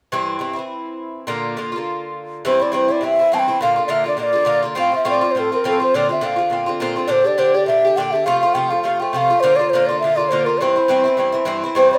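A picked Irish bouzouki opens this cheerful, lively Celtic reel, its double strings giving a metallic yet acoustic ring as it sits up front and lays down the chords in a lightly swung 4/4. At 2.5 seconds a bamboo bansuri takes the melody, breathy and mellow, with a crisp attack, expressive vibrato, and a level that places it above the accompaniment. Under the tune the harmony moves through C, Bb, F, Bbadd9 and Gm before returning to C. Just at the close, at 11.8 seconds, a hollow wooden flute slips in with a tongued second line, pure and distant in the background. A moderate studio reverb adds a touch of room to this brief fragment of a longer piece.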